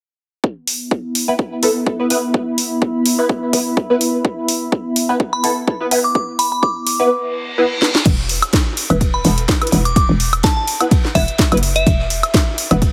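Heavily compressed, radio-like sound with light reverb frames this gritty, swaggering bass house cut at 126 BPM, swung on the sixteenths and tuned to A4 = 439 Hz. An overdriven, punchy electronic kick and a house kit with cracking snare, bright hats, crash and woodblock drive the groove, while a nasal, band-passed chord stab pumps through phaser and delay, a lo-fi, warbling tape-like pad hums until 7.1 s, and a glassy, crystalline bell melody enters at 5.3 s. A reverse cymbal and drum fill lead into the second half at 8.1 s, where a hollow, bouncy FM bass with tube saturation arrives alongside a dark, low-tuned acoustic kit of fat snare and ride, as a filter sweep works over the stab.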